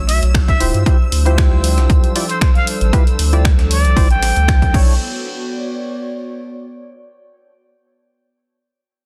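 Deep house at 116 BPM in B minor with a moody, late-night feel, this dry, densely limited excerpt opens on a drop built from an overdriven, up-front electronic kick, a punchy analog drum machine of crash, finger snaps and hi-hat, a very quiet, gritty sampler-style breakbeat kit, a round, deep analog bass and hollow, decaying organ stabs with tape echo, while a breathy, nasal trumpet with a straight mute plays an intimate jazz-style solo through digital delay over Bm11 and Dm11 chords from a soft, flute-like pad, shimmering vintage string-machine violins and a warbling, lo-fi tape-like pad, the pads, strings and bass all pumping, until the tape pad carries on alone over Bmadd9 from 5.0 to 7.0 seconds.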